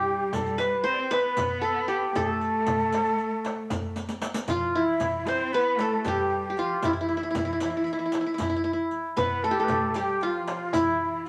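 A bright-edged, fingerpicked qanun leads up front from the opening, alongside a breathy, vibrato-laden ney and a smooth, focused bowed cello as second lines in this melancholic, longing Turkish makam ensemble excerpt in A makam nihavent, 9/8 at 230 BPM in eighths, while a crisp, deep metal-shell darbuka, a small, dry frame drum in the background and a riq with dark jingles supply the percussion, and a drum fill from 4.0 to 4.5 s leads into a new section, heard in a moderate studio reverb.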